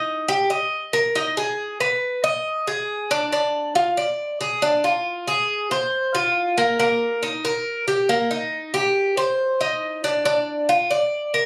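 Captured on a phone in a studio room, this short cut from a longer piece carries a moderate reverb and a touch of room ambience around a single Cuban tres placed up front. The acoustic tres plays alone for the full 11.5 seconds, its picked double strings, some doubled at the octave, ringing with a metallic shimmer between Bb3 and Eb5. It is a danceable, warm Latin passage in Eb major at 138 BPM in a straight 4/4.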